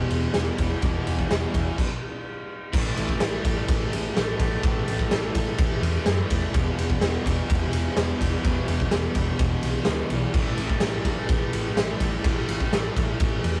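A rough rehearsal-room recording with warm saturation and light reverb opens this swaggering, raw garage rock excerpt at 126 BPM in a straight 4/4. A bright, double-tracked fuzz guitar drives the riff over power chords on E and A, with a dark, round hollow-body short-scale bass played with a pick and a gritty, up-front drum kit of boomy kick, medium-tuned snare, crash and ride in a pumping stone room. The band halts for a stop from 1.8 to 2.7 seconds before coming back into the riff until 13.6 seconds.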